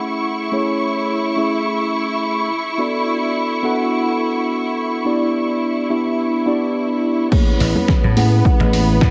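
Nu-disco at 106 BPM in A major, groovy and feel-good, opens with a mellow tine electric piano carrying analog chorus and delay over veiled, con sordino strings pumping with sidechain through Amaj7, D6 and G6, until a drop at 7.3 s brings an overdriven, punchy electronic kick, a gritty, tape-warm sampler-style kit with snaps, hi-hat, snare and crash, soft-handed shaker and congas tucked behind, and at 7.6 s an amped vintage slap bass up front, all bathed in a dreamy plate-reverb haze that rounds off the top end.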